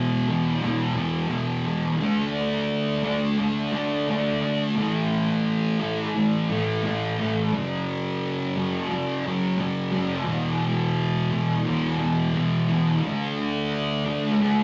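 The rhythm sits in a straight, steady 4/4 at an unhurried rock pace, and a single thick fuzz guitar carries the whole 14.6-second fragment cut from a longer piece. Picked and double-tracked, the electric guitar is placed up front, its distorted tone thick and warm as it ranges from E2 up to D4. It moves through E5, D5, A5 and F#5 before returning to E5 and D5, a cycle of chords that feels blissful and hazy rather than aggressive. A small, wet room reverb wraps the part in a short halo, and the rough rehearsal-room recording adds warm saturation that softens the edges. Tuned to A4 = 439 Hz, the sound has a dreamy, slightly smeared glow that suits the drifting mood.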